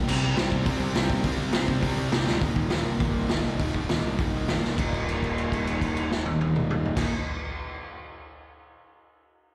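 A straight 4/4 punk rock drive at 203 BPM pushes this energetic, rowdy clip in Eb major, cut from a longer piece and heard as a live gig through the venue's PA with a touch of recital-hall reverb. Up front, a raw garage drum kit hammers away on kick, snare, hi-hat, crash and toms, with a boomy kick, a medium-tuned snare and a gritty, saturated, mid-forward tone with a rolled-off top, breaking into fills at 2.3 and 4.6 seconds. Underneath, a fuzz picked electric bass growls through overdrive, running direct and amped from Eb1 to D2. Two bright, picked guitar riffs sit in the background: a crunchy overdriven part with slapback echo and a compressed, scooped distorted part. A very quiet, double-tracked thick fuzz guitar adds weight only in the opening section before falling away. The chords move from C5 to Eb5 to Eb, and the final section rests on a held note from 4.8 seconds.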